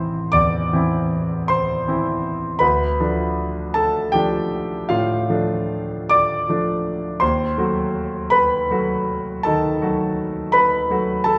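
Wistful and melancholic, this brief excerpt from a romantic nocturne for solo piano unfolds in 12/8 with free, rubato phrasing. A clear, smooth grand piano with a vintage character and short sustain sits up front, reaching from A1 up to D6 as the harmony moves from A minor to D minor and then to a darkening D# diminished seventh at 7.2 seconds. The sound is bathed in the wet reverb of a recital hall, lending the playing a sense of space.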